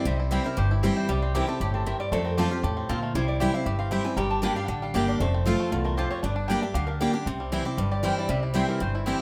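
A moderate studio room surrounds this short, driving and haunting bluegrass clip at a brisk 233 BPM in straight 4/4, moving through C, F and G minor. A twangy, percussive banjo and a nasal, metallic slide resonator guitar carry the melody together, both bathed in plate reverb, while a second, brighter resonator guitar adds a second line until 7.1 seconds. An up-front dreadnought acoustic guitar drives the picked accompaniment with audible finger squeak, a woody, thumpy pizzicato upright bass anchors the low end, and a double-strung mandolin punctuates with stabs.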